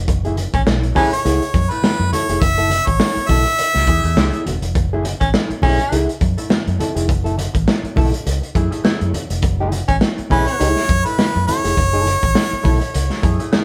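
Swung sixteenths drive this cool funk groove, with a gritty, up-front breakbeat kit, a round, foam-muted fingered bass, a clean hollow-body guitar through wah and very quiet, low-tuned congas beneath a clear, close-miked harmonica melody with scooped notes, while a bright baritone saxophone adds brief punchy lines at 0.5, 5.2 and 9.9 seconds, all captured as a band playing live in one room with moderate reverb.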